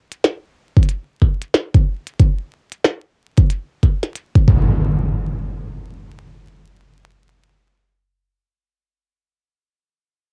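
A glitchy drum kit opens this short cut from a longer glitch hop piece, its clicky hi-hats and tiny snare sitting up front with a tape-warm, cassette-worn grit. At 92 BPM in 4/4 with a 62% swing on the 16th notes, the groove has a gritty, swaggering strut. An electronic kick drum joins at 0.8 seconds, a layered, knocking thump that is overdriven and roughened by cassette tape, sounding as if re-recorded in a small room. Both drum parts drop out around 4.5 seconds, where an electronic impact takes over and carries into the second section. The whole has the feel of a home recording on cassette, dusted with vinyl crackle and a light reverb.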